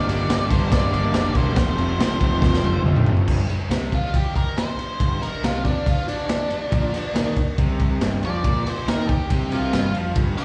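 A straight 4/4 pulse at 140 BPM drives this raw, gritty garage rock clip in G minor, cut from a longer piece and heard as if from a live gig through the venue's PA, caught on cassette with light recital hall reverb. The crunchy breakbeat drum kit sits up front, saturated and pumping in its small room, with a tight kick, medium-tuned snare, dark cymbals across crash and ride, and toms, entering at 0.1 seconds. Beneath it, the fuzz picked electric bass holds the low end from E1 to F2, while the overdriven semi-hollow guitar plays a bright, double-tracked riff with slapback echo, moving from Gm to F. A drum fill at 2.4 seconds leads into a second section at 3.3 seconds, where the octave-fuzz lead guitar takes a distorted solo between D4 and G5, its slapback echo adding grit over G5 and Bb5 power chords. The drums carry a rolled-off top, and the bass has a warm, direct and amped tone.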